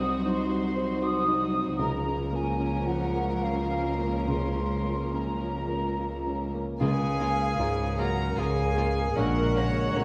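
Set in a lush scoring-stage reverb, this short cut from a cinematic film score keeps its strings intimate and close while the hall blooms around them. In a slow, rubato 3/4 at about 67-79 BPM, it opens in Bb minor with a present, polished grand piano and a cello section carrying the bass. A dark viola section sits in the background, and a rich violin section and a distant, expressive flute section trace second lines over very quiet, ringing concert harp arpeggios. At 6.8 s the music turns to Db major and grows fuller: a second violin section takes the melody with a pure, floating tone, and a mellow cor anglais adds a solo second line. With them, a French horn section holds soft sustained chords in the background, and a woody double bass section deepens the bass. Timpani struck with hard mallets sound very quietly until 8.0 s before the harmony returns to Bb minor, and the sul tasto bowing across the string sections lends the hopeful, moving mood a gentle sheen.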